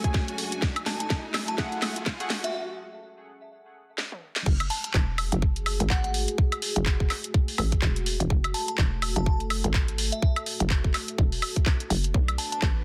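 This aggressive, bouncy bass house excerpt opens on a build-up in which a dark, moody ambient pad, a nasal band-passed chord stab with dub echo, lush close strings in the background and an electronic riser all gather over a tight, up-front kick and a garage kit full of cracking snare, hats, claps, toms, woodblock and crash, with a drum fill and a filter sweep pushing it forward. A crystalline, warbling synth bell carries the melody from 0.9 seconds on, trailed by chorus and dub echo. The stab, strings and riser fall away by 2.5 seconds for a short break before the drop lands at 4.5 seconds. There a hollow, knocking FM bass with overdrive takes over the low end, pumping against the kick while the pad keeps breathing underneath. The strings return briefly near the close as the harmony shifts, all within a dense, heavily limited modern mix with a light reverb.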